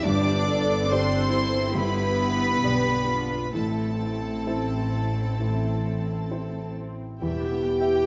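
Moving and bittersweet, this rubato cinematic film-score cue in A minor drifts at 64-72 BPM, with a clear, floating violin melody over a dark second violin line, intimate sul tasto violas, cellos and double basses, a felt-muted upright piano with audible action noise, and ringing thumb-plucked harp arpeggios in the background, until a warm French horn section enters in the background at 7.2 s, all held in a moderate scoring-stage reverb.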